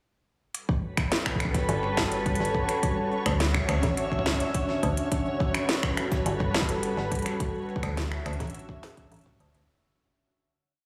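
IDM at 105 BPM in G lydian, glitchy and playful, where a deep, tape-warm broken kick joins a clanging, ever-changing industrial kit of snaps, crisp hats and snare with digital delay, a glassy, ethereal FM pad with ensemble chorus holds Gmaj9 and Dmaj9 chords up front, a metallic FM bass plays a dub-style line from 1.7 seconds, and a flickering, grainy granular texture holds a high note, all in a lush hall with a heavily compressed radio sound before a fade-out from 6.6 seconds.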